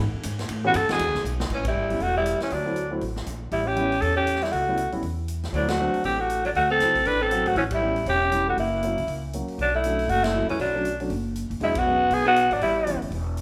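Sophisticated small-group swing and bop jazz in A mixolydian at a brisk 238 BPM, where an up-front tenor saxophone carries the melody with a raspy, growling edge and vibrato. A gritty alto saxophone enters at 1.5 s with subtone and scooped notes on a second line, after a drum fill at 1.2 s, and band accents punctuate the run of chord changes. Underneath, a woody, thumpy pizzicato upright bass, a punchy-kicked big-room drum kit with ride, hi-hat and crash, and a dark, mellow baby grand piano with audible action noise all sit in a moderate large-studio reverb that places the band together in one live room.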